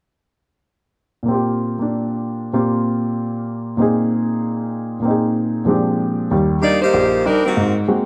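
An edgy, close-miked saxophone section with vibrato bursts in up front at 6.6 s, carrying a brief jazz melody. Beneath it, a warm baby grand piano, present from 1.2 s, accompanies through swinging Bb harmonies before shifting to an Ebmaj7 as the second section arrives. The brassy, swinging fragment sits in a moderate echo chamber reverb with a dark, warm production and feels cut from a longer piece.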